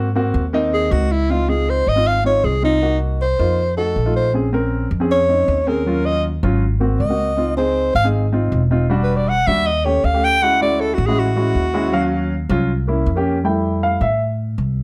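Lively and sophisticated, this Afro-Cuban jazz passage moves at 158 BPM in a straight 4/4 in Db major, its chords rich with extended jazz colours. A breathy, close-miked alto saxophone takes the intimate solo from 0.7 seconds, with whispered vibrato and scooped notes. A dark, mellow baby grand piano and a woody, thumpy pizzicato upright bass support it up front in light reverb, and the piano steps into its own brief solo at 13.5 seconds as this cut from a longer piece closes.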